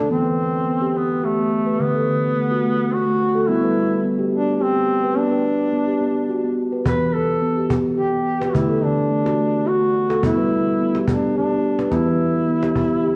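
Set in a gently swung 3/4 at 107 BPM, this meditative world piece in E minor cycles through Em, D, G and Bm. A steel tongue drum plays round, ringing arpeggios with soft mallets, and a distant, roomy duduk carries a folk-style melody with vibrato and scooped notes; both parts are touched by tape echo. A woody, band-limited cajon with faint snares joins at 6.9 seconds, and the whole hypnotic passage sits in a recital-hall reverb with a worn, warbling cassette drift.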